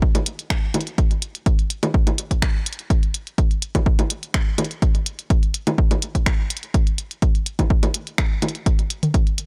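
A punchy, tape-warm analog kick drum opens this hypnotic, clinical 125 BPM techno excerpt in straight 4/4, joined at 0.1 seconds by a minimal click kit of finger snaps and clicky hi-hats re-recorded in a small room, and by up-front, layered electronic bongos and toms driven through overdrive and tape echo, all in a dry, gritty hardware recording.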